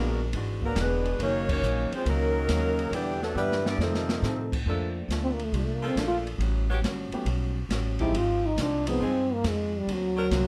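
Big band swing at 138 BPM, swinging and brassy, heard as a short cut from a longer piece. It opens with the saxophone section carrying the melody, tight and up front, while a mellow trombone section plays a second line in the background, a band accent lands at 1.4 seconds, and a drum fill closes the opening phrase. Underneath, a pizzicato upright bass sounds woody and thumpy, a clean, compressed hollow-body electric guitar and a polished upright piano comp in the background, and an acoustic drum kit with dark cymbals and a boomy kick keeps time. At 4.7 seconds the music settles into Bb major, and from 5.2 seconds a breathy solo trombone takes the melody with scooped notes and light vibrato. Behind it the saxophones shift to loose, sustained chords with vibrato. The piano drops out at 9.0 seconds, and a moderate club reverb gives the band a small-room feel.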